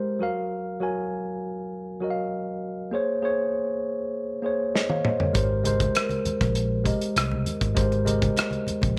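Romantic and lush, this short cut from a longer 1970s-style soul piece moves at an unhurried 99 BPM in straight 4/4. A mellow tine electric piano opens alone, worn and slightly out of tune yet clean and up front, voicing chords that move from Gbmaj7 to Bbm9 and on to Abmaj9 at 5.3 seconds. A drum fill at 4.7 seconds brings in the soul kit, an acoustic small-room sound with a tight kick, medium-tuned snare, rim click, hi-hat and toms, its top rolled off. At 5.3 seconds a dark, round, foam-muted fingered electric bass arrives, sitting low, while low-tuned, thick-skinned congas fill the background. A very quiet vibraphone struck with medium hard mallets adds a smooth, metallic ring with slow motor vibrato on a single Bb4 from 5.9 to 7.7 seconds, and light reverb softens the whole blend.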